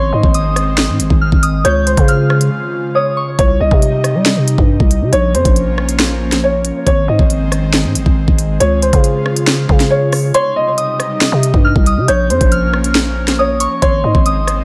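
Drill hip hop at 138 BPM in a half-time feel, cold and tense in C phrygian, where a dark, worn grand piano carries the filtered, delayed melody over an airy, breathy chorused pad, a soft FM bell line that drops out at 3.4 seconds and returns at 10.3, a growling, buzzy 808-style bass up front, and an electronic drum kit with knocking kick, sharp snare and crisp hats entering at 0.2 seconds, with a brief break before 3.4 seconds and a dry sound throughout this cut from a longer piece.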